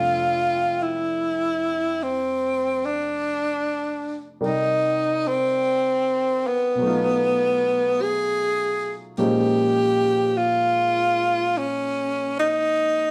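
Jazz ballad with an intimate, late-night mood in a lilting swing, where a close-miked tenor saxophone sits up front carrying the solo melody with vibrato, soft attacks and scooped notes, while a smooth, vintage-toned grand piano accompanies through rich extended chords, the pair set back in a wet studio reverb as a short cut from a longer piece.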